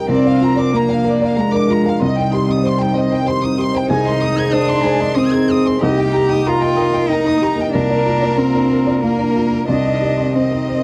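A rubato 3/4 sway at 94 BPM carries this fragile, longing neoclassical piece for piano and strings, where a felt-muted upright piano with audible action noise sits up front in mellow accompaniment, a rich chamber violin section sings the vibrato-laden melody up to Ab6, a sul tasto cello with an airy bow joins at 0.1 s as an intimate second line, a very quiet string section holds focused sustained chords, and a dark, woody marimba ripples arpeggios in the background over chords moving from Bb/C through Cm, Ab/C and Eb/C, all captured in a dry, close 1970s-style studio sound.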